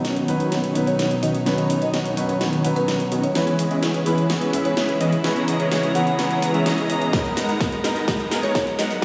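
A huge, detuned supersaw riff sits up front, its chords pumping against the sidechain through a low-pass filter sweep, cassette tape colour and dub echo, over a dark, mellow baby grand piano and softly bowed, floating strings in this uplifting, triumphant festival progressive house build-up cut from a longer piece. A woody marimba melody enters at 0.9 seconds, while the big-room kit's huge snare and metallic hats drive a drum fill that runs throughout, moving from Badd9 through C#m7 to G#madd9. A punchy layered kick arrives at 7.1 seconds and a very quiet riser at 7.4 seconds, all heard as if through a big sound system in a bare stone room with lush hall reverb.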